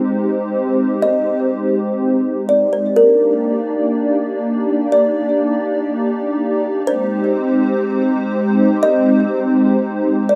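Hip hop in free time, blissful and dreamy, where a woody, ringing kalimba melody with tape echo drifts over a hollow, flute-like pad of detuned, slowly evolving sustained chords with ensemble chorus sitting up front, moving from Abmaj7 to Ebmaj7 at 3.0 s and back to Abmaj7 at 6.9 s in a rough home demo mix with light reverb, cut from a longer piece.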